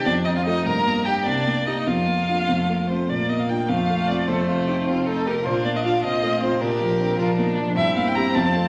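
A reverberant recital hall surrounds this short cut from a quick, graceful and cheerful classical-period movement for piano quartet in 6/8. The dark grand piano sits up front with a mellow, natural tone and short sustain, carrying the accompaniment from its low register up into the middle. A focused solo violin, also up front, bows the melody with vibrato in a clear upper range, while a second violin plays a supporting line beneath it. The cello joins at 0.5 s, bowed with vibrato but kept in the background as another second line. The harmony moves through chords such as F, Gm and Cm7 before a new section begins at 3.1 s that leans on Bb and F7.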